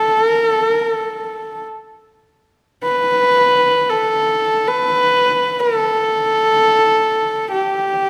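A lone horsehead fiddle opens this brief Mongolian folk excerpt, one player bowing its horsehair strings in free time within a narrow range around G4 to B4 for the full 8.1 seconds. The tone is nasal, earthy and husky, shaded with light vibrato and gliding portamento, and it sits up front in a moderate, stage-like reverb. The mood feels vast and galloping, like a fragment lifted from a longer traditional piece.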